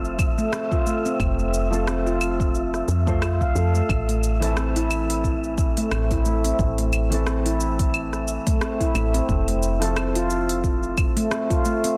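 Organic downtempo with a warm, earthy mood, this short section cut from a longer piece moves at an unhurried pace with a gentle swing on the sixteenths, drifting from F to A minor and back. A handpan carries the arpeggios from 0.4 s, its ringing stainless-steel tone struck with the fingertips and sitting up front, softened by a low-pass filter and tape echo. Beneath it, a felt-muted upright piano plays a mellow, intimate accompaniment, pulsing with sidechain pumping and trailed by its own tape echo. A woody FM bass, round and dark with a fast attack that then decays, sits close to the listener and drops out at 11.1 s. The afro-pop drum kit sets claves, smooth hi-hat, rim click and shaker around a snare with soft clipping, while a deep electronic kick enters at 0.2 s, both carrying a tape-warm character. Far back, an airy, breathy tuned-noise layer holds a sustained wind-like tone in its own reverb, all within a light room and a dense, heavily limited modern master.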